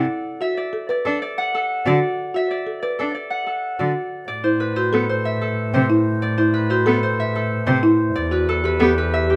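Urgent yet meditative, this excerpt of minimalist classical pattern music moves at 186 BPM in a straight 6/4, set in A dorian with tuning at A4 = 437 Hz and passing from Bm7 through Am69 to Em11. A bright, ringing fingerpicked Celtic harp carries the melody up front, while a focused, bowed cello with vibrato supplies accompaniment and a woody, mellow folk marimba played with soft mallets spins dry, rustic arpeggios. At 4.3 seconds a smooth, close bowed double bass enters on the bass line, and the whole sits in a nearly reverb-free space.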